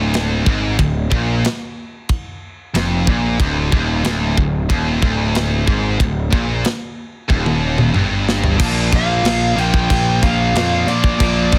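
The sound is dense and heavily limited, set in a small room with a modern master. This dark, relentless heavy metal cut moves at 92 BPM in a straight 4/4, grinding on D minor in D phrygian. A growly, fuzz-laden picked bass and a tight acoustic kit with a medium-tuned snare, tight kick and rolled-off top sit up front. Behind them, three distorted rhythm guitars stack the riff: a bright high-gain part in the background, a scooped high-gain part, and a very quiet, double-tracked sludgy part. A drum fill from 7.3 to 8.6 seconds leads the harmony to Bb, and at 9.0 seconds a warm, distorted high-gain lead guitar enters with a short melody high above the riff.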